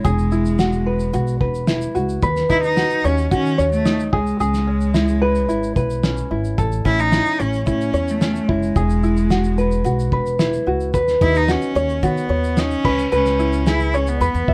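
A straight 4/4 acoustic pop pulse from a cloth-damped, thuddy, gritty lo-fi drum kit, with its fat snare, tight kick, shaker and dark, muffled crash, carries this heartfelt, carefree excerpt, as an up-front bowed cello sings a rich, nasal melody with vibrato over bright, thumb-plucked tenor ukulele and woody pizzicato upright bass, captured by close, detailed microphones with little reverb.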